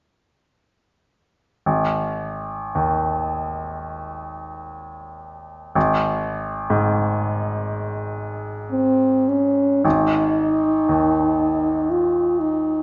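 Romantic classical music for French horn and grand piano in Ab major, lyrical and serene, moving at a rubato 51-64 BPM in 4/4: a bright, polished baby grand plays short-sustained low-register accompaniment from 1.7 seconds, and a mellow, punchy French horn with light vibrato enters up front at 8.7 seconds to carry the melody until this fragment is cut off at 12.8 seconds, all set in a moderate recital hall reverb with a softened top end.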